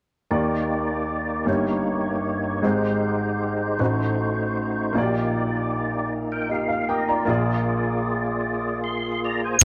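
Set in a light reverb, this soulful, hopeful gospel passage in 6/8 at 52 BPM in Eb major pairs an intimate, woody upright piano with audible action noise playing accompaniment alongside a fat, lightly overdriven tonewheel organ with key click, chorus vibrato and a slow rotary speaker holding sustained chords, both up front from 0.3 to 9.6 seconds as the harmony moves from Ebmaj7 through Abmaj7 and Adim7 to a closing Bb7.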